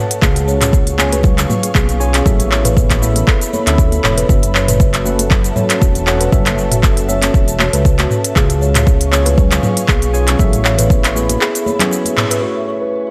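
Light digital ambience frames this earthy, hypnotic afro house excerpt, where an overdriven, deep electronic kick and a crisp, tape-warm afro-pop kit of handclaps, hi-hat, shaker and toms sit up front, a dark, rumbling detuned saw bass pumps with sidechain, a woody, ringing kalimba plays arpeggios through digital delay, a clean tine electric piano stabs through a combo amp, bright high-tuned congas sit in the background, and an ethereal, chorused pad holds mellow chords through to the end, past a band accent at 12.2 seconds.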